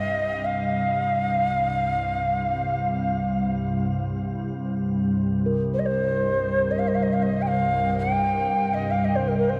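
Floating in free time, this haunting, meditative world piece is a short excerpt cut from a longer work. A hollow, wooden Native American-style cedar flute carries the melody up front, its pure, mellow tone shaped by gentle vibrato and a soft attack, dressed in shimmer reverb and delay, and carrying a distant quality. Beneath it, an organ-like pad holds a low drone throughout, sounding full-bodied and calm, with detuned sine tones, a slow attack, a long release, ensemble chorus and its own built-in reverb. At 5.5 seconds a bronze singing bowl, struck with a felt mallet, begins ringing in the background, its metallic, dark voice carrying a slow beating. A huge ambient reverb wraps the whole production in a dark, warm space.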